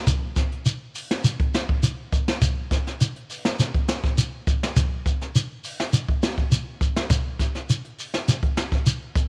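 Funky and hypnotic, this short afrobeat passage moves at 102 BPM in a straight 4/4 feel and is cut from a longer piece. A jazz kit played with brushes carries the groove from 0.1 to 9.3 seconds, its hi-hat, medium-tuned snare and boomy kick sounding acoustic and roomy, with a distant quality even as it sits up front. A shekere plays throughout the same span as the percussion layer, its grainy, mellow texture placed close in the mix. Both parts share a small-room reverb that gives the pair an intimate, live ambience. The whole passage stays in a single section, holding one steady, trance-like pulse.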